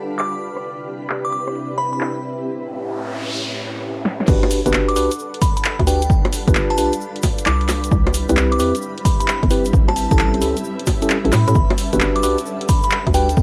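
A silky, dark string machine with ensemble chorus and a cloudy, blurred granular pad open this sunny, bouncy two-step UK garage excerpt in G major at 132 BPM, both pumping against the beat, joined almost at once by a filtered house kit of hats, rim clicks, bongos, claps, crash and punchy snare, and a crystalline synth bell melody trailing tape echo. A noise sweep runs from 2.7 seconds and a drum fill lands just before the drop at 4.3 seconds, where a punchy, up-front analog kick, a hollow, knocking FM bass, mellow tine electric piano stabs and a grainy egg shaker tucked in the background arrive. Chords cycle through Cmaj7, A7, Gmaj7 and G7, and the whole mix carries the soft haze of a home cassette recording in a lightly reverberant room.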